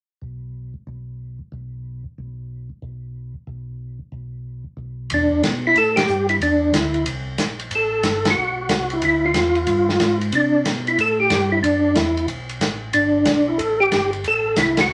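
Soul jazz organ trio with a smoky, bluesy swing, where a round, dark tonewheel organ bass line with chorus vibrato and slow rotary speaker opens alone from 0.2 s before an up-front, percussive organ melody with third-harmonic percussion and an airy acoustic drum kit of hi-hat, ride, dark cymbals and a medium-tuned snare join at 5.1 s, the band hitting accents at 5.9, 8.2 and 14.7 seconds over lush extended chords in a polished small room bathed in wet reverb.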